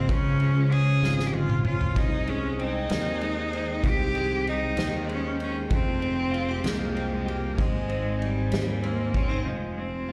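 A clear, focused bowed cello with vibrato carries the melody up front in this romantic, heartfelt six-eight pop ballad, bathed in plate reverb and moving over chords from Db through Ab/C and Fmadd9. A double-tracked, clean, picked electric guitar with slapback echo supplies the accompaniment, while a soft, flute-like tonewheel organ holds sustained chords in the background through a slow rotary speaker, and a bright, growly fretless bass sustains underneath. An acoustic drum kit played with bundle sticks, with dark cymbals and a punchy kick, enters at 0.1 s and plays a fill from 1.0 to 2.0 s, all heard as a live gig through the venue's PA with recital hall reverb.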